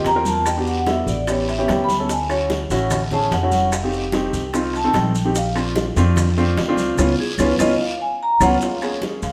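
Sunny and sophisticated, this short cut from a longer Afro-Cuban jazz piece moves at 147 BPM in a straight 4/4, with the whole band playing live in one room washed by a stone-like reverb. A metallic, ringing vibraphone struck with medium hard mallets carries a solo melody throughout, its slow motor vibrato shimmering over the groove. Up front, a warm, intimate grand piano accompanies with audible action noise, while a woody, growly pizzicato upright bass on steel strings gives a dark, thumpy foundation. Bright, thin-skinned congas and woody vintage claves sit in the background, joined by round, low-tuned bongos, ringing metal-shell timbales, a raspy guiro and grainy, mellow maracas. The harmony travels through chords such as Em7, Dmaj7, Bbmaj7 and Db7, and at 7.0 seconds the band hits an accent, with a drum fill arriving at 7.8 seconds before the phrase turns toward A#m7.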